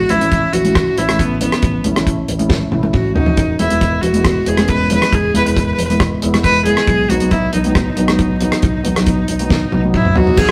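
A clear, biting viola opens this carefree calypso fragment up front, carrying the melody with light vibrato and an airy bow over a fingered electric bass that holds the low end. Within the first second a shimmering steel pan, played with medium rubber sticks, fills in the accompaniment, while a damped 70s drum kit with dark cymbals, a fat snare and a tight kick sets a bouncy, straight 4/4 groove at 137 BPM. Very quiet congas with a thin, bright skin add soft-handed color beneath the kit. The harmony moves from A6 to E at 3.4 seconds and then to B at 6.9 seconds in E major, with drum fills arriving around 2.5 and 9.5 seconds. The viola sounds earthy and close, the pan dry and full, and the whole band sits in a moderate stone-room reverb that gives the rough rehearsal-room recording an unpolished character.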